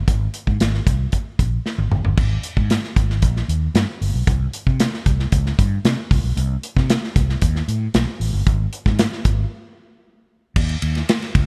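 A straight 4/4 groove at 114 BPM drives this short excerpt of polished 1980s jazz-funk pop, its mood nocturnal and slick. A mellow fretless electric bass opens at 0.0 seconds, sitting up front with a round, amped tone that ranges from Gb1 to C3. A modern studio drum kit joins at 0.1 seconds, its tight kick, medium-tuned snare, hi-hat, ride, crash and toms captured with a small-room feel and a rolled-off, smooth top end. A drum fill from 1.7 to 2.2 seconds carries the opening passage into the next section, which runs until a break from 9.5 to 10.6 seconds. Light reverb and bright 1980s-style digital production give the pair a sleek, late-night sheen.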